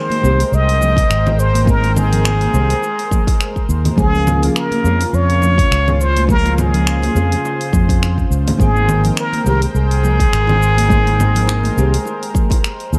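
Sunset chillout with a blissful, relaxed swing, in which a close-miked, plunger-muted trumpet sings a bright wah-wah melody over fingerpicked, full-bodied nylon-string guitar (both touched with digital delay), a thick, detuned unison pad with chorus and vintage 12-bit sampler grit, a deep house kit of finger snaps, dark hi-hat, shaker and congas, background congas and bongos struck with hard hands, a growly, punchy fretless bass up front and a layered electronic kick that enters at 1.0 s, all in a dusky, lightly reverberant mix that breaks briefly at 12.6 s.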